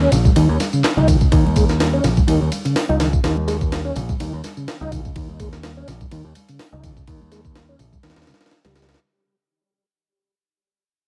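Breakbeat with a funky, gritty feel, this short excerpt cut from a longer piece moves at 125 BPM in 4/4 with a light swing on the sixteenths, its tuning set slightly sharp at A4 = 441 Hz. A tonewheel organ plays a riff over an Eb7 chord, its clear, clean tone colored by chorus vibrato, a slow rotary speaker, overdrive, a low-pass filter and tape echo, with a filter sweep running across the whole passage. A picked electric bass sits up front with a direct, tube-saturated sound, and both parts play from 0.0 seconds. A compressed, pitched-up, sampler-style breakbeat kit enters at 0.1 seconds with a thumpy kick, high-tuned snare, hi-hat and ride, carrying a tape-warm grit, joined by dry analog electronic tambourine and handclaps and very quiet acoustic congas in a small room. The mix is close and nearly free of reverb, and the whole passage is a fade-out that lasts until 9.0 seconds.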